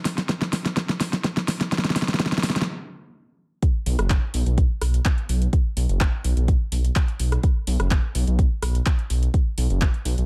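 Progressive house at 126 BPM, dreamy yet driving, cut from a longer piece. A deep house drum kit of handclaps, metallic hi-hats, rim click and a fat snare sits up front beside a layered, tape-tinged electronic kick with a deep, high-passed thump, building through a drum fill before a stop at 2.7 seconds. Just after the drop at 3.6 seconds, a dark detuned saw bass enters at 3.9 seconds with a rumbling, beating unison tone, tube saturation and sidechain pumping, all set in a digital ambience.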